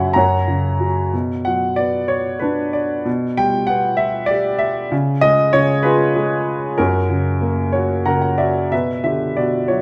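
Classical solo piano in a lyrical, dark and melancholic vein, this short passage cut from a longer piece has a smooth, vintage-toned grand piano sitting up front in a moderate recital hall, drifting through 6/8 with free rubato and uneven beats over chords moving from F# through Bm, Em9/B and C#7, before a brief fill at 7.7 seconds leads into a new section at 8.7 seconds.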